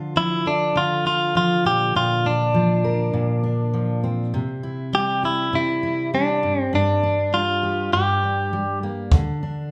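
Acoustic pop with a wistful, reflective mood and a gentle 16th-note swing, cut from a longer piece and played live by a band in one large studio room with moderate reverb. A full-bodied jumbo steel-string acoustic guitar is fingerpicked up front with audible finger squeak, moving through Dm, Bb, C and G5, while a clean, compressed, direct-recorded electric guitar picks a warm melody alongside it from 0.2 seconds. A dry, punchy acoustic kick drum lands briefly at 9.1 seconds as the chords drop away.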